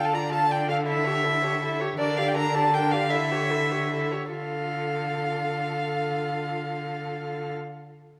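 A smooth, vibrato-laden first violin carries the up-front melody in this restless, stormy fragment of a quick classical-period string-quartet movement in D minor and 6/8 at 96-108 BPM, with a focused, distant second violin on a supporting line, a clear viola in the accompaniment and a rich cello anchoring the bass on D3, all one bowed player apiece, under chords moving from Dm through A7/D and Gm/D, as the pace slows from 1.4 to 4.3 seconds in a wet recital-hall reverb.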